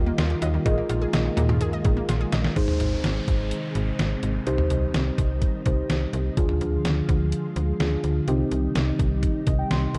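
Cool and melancholic, this synth-pop excerpt in C minor at 126 BPM lays muted, felt-like synth keys with chorus over mellow, organ-like ensemble string chords, while a round, detuned analog pluck plays chorused, tape-echoed arpeggios until 2.5 s, a snappy, metallic slap-like FM bass and a detuned 8-bit digital drum machine with a thumpy kick, cowbell and toms sit up front, and an electronic downlifter sounds from 2.6 to 6.4 s, all set in a dark production with scoring-stage reverb.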